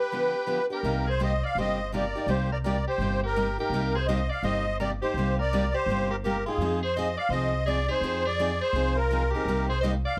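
Virtuosic and swinging, this short excerpt of acoustic string swing in C minor at 167 BPM sets a reedy, shimmering musette accordion melody with plate reverb up front beside a bright, forceful soprano saxophone second line with vibrato and scooped notes, over a picked steel-string acoustic guitar with audible finger squeak and a woody, thumpy pizzicato upright bass on gut strings that enters at 0.8 s after a brief break, as the chords move from G7 to Cm7 and Fm7 in a moderate studio room.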